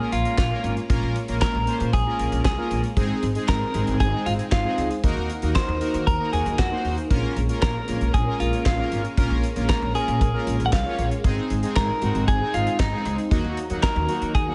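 Synth-pop in Bb minor at 116 BPM, melancholic yet driving, this short excerpt puts a clean, picked electric guitar up front with the melody, dressed in lush chorus and digital delay, over bold, bright sawtooth synth brass with a filter sweep, a vintage, organ-like ensemble string pad in the background, a woody, thumpy pizzicato upright bass, and a dry 70s drum kit with fat snare, tight kick, hi-hat and handclaps in gated reverb, cycling through Bbm7, Ab and Ebm.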